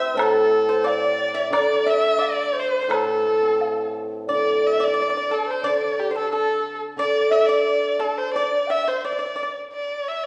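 Graceful and tender, this rubato fragment of a Chinese chamber piece, cut from a longer work, places an up-front erhu carrying the melody with expressive vibrato and portamento over a shimmering, ringing hammered dulcimer, while an airy, reedy bamboo xiao drifts distantly in the background, a mellow, dry pipa adds a percussive second line played with fingerpicks, a close woodblock sounds in the background until 3.8 s, and a recital hall's reverb surrounds the ensemble.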